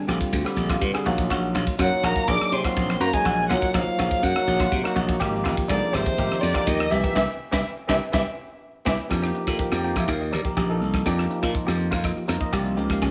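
A polished studio sound with moderate large-room reverb and a touch of small-room ambience frames this slick, soaring slice of electric jazz fusion, cut from a longer piece and moving at a straight 123 BPM in 4/4. A bell-like tine electric piano, shimmering with lush chorus, lays down the harmony from the start, while a bright, twangy clean electric guitar with subtle chorus adds compressed, picked stabs in the background. Underneath, a glassy slap bass sits up front, growly and punchy, beside a crisp, airy drum kit with a high-tuned snare, punchy kick, hi-hat, ride and rim clicks. At 1.8 s a dark, woody violin with vibrato and slapback echo takes the melody, joined by a raspy, growling trombone playing a soft-attacked second line in a vintage jazz style. A band accent and a short drum fill lead into a new section at 9.1 s, where the harmony settles into F mixolydian, moving between F9sus4 and Eb6.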